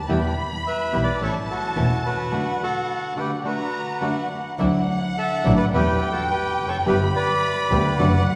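A lush violin section and a close, bowed double bass open this passionate, playful tango excerpt at 107 BPM in 4/4, played rubato in D major with tuning at A4 = 435 Hz. The violins carry a second line with expressive vibrato, while the lone bass player gives the low end a biting, nasal, earthy tone with light vibrato and an airy bow. A full-bodied nylon-string guitar fingerpicks a deep classical accompaniment, and a warm, up-front bandoneon with a reedy, boxy small-room character adds stabs, while a second, dark, mid-forward bandoneon sits in the background and carries the melody from 0.7 s. The chords move from Em through A to D, with a break from 2.3 to 4.6 s, and then the phrase returns over Dadd9, Em and Gadd9. The whole performance is set in a wet church reverb with studio ambience, giving it a spacious, resonant finish.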